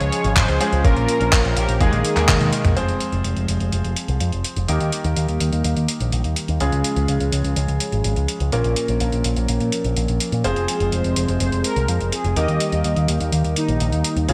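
A punchy, up-front picked electric bass with an envelope filter drives this melodramatic, nostalgic italo disco cut in F minor at 125 BPM, taken from a longer piece. Beneath it, a smooth, detuned analog pad holds sustained chords with chorus, and a filter sweep runs across it from 2.8 seconds as the harmony moves through Fm, Eb, Db and Bbm. A clear concert grand piano adds open, deep-toned stabs with delay. A gritty, tape-warm sampler-style kit supplies handclaps, hi-hat and toms with gated reverb and a short fill, while a thumpy electronic kick appears briefly at the start and stops at 2.4 seconds. A bold, fat analog synth brass carries the melody with chorus and delay, opening the passage and returning at 10.4 seconds. The production is bright and 1980s-style, with light reverb and digital ambience.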